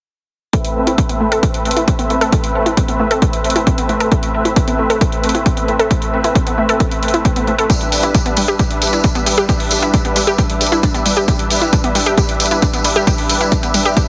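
Uplifting trance at 134 BPM in A minor, emotional and euphoric, this short cut from a longer piece pairs an up-front, airy supersaw swell holding sustained chords from Amadd9 to Em7 with a round, detuned analog pluck tracing arpeggios through chorus and delay under a filter sweep, both pumping against a punchy, tape-warm kick and layered electronic hi-hats, while a jingly vintage tambourine joins at 7.7 seconds, all set in light reverb with a heavily compressed, radio-like finish.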